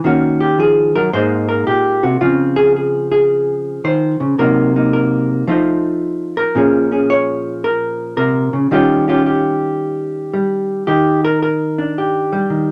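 A moderately roomy studio sound frames this swinging solo jazz piece at 111 BPM, where a dark, clean electric hollow-body guitar, fingered and up front, moves on its own from Ebm9 through Dbmaj9, F7 and Bbm9 before settling on Ebmaj7 at 10.9 seconds in this short cut from a longer performance.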